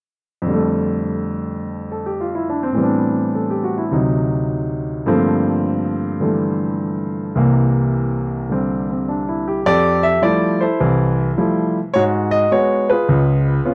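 A close, dry 1970s-style studio sound puts a baby grand piano up front in a small booth with a short, intimate ambience. This relaxed, swinging solo jazz fragment, cut from a longer piece, features the warm, natural piano across a range from C2 to E5, playing from 0.4 seconds through 13.7 seconds. Its harmony moves through rich extended chords such as Am11, D7b9 and Gm11 before a new passage at 9.6 seconds opens on Fmaj9 and turns toward Abm7 and Db7.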